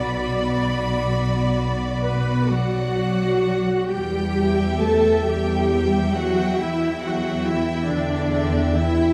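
A dark, reverberant recital-hall sound frames this solemn, elegiac excerpt from a slow romantic movement for string orchestra, moving in a rubato 12/8 at 44 BPM in B minor before shifting to E minor at 3.9 s. A lush, smooth violin section carries the melody high above a second violin line of intense, clear tone, while an up-front viola section supplies the accompaniment. A focused cello section and a close, expressive double bass section, also up front, anchor the bass with vibrato.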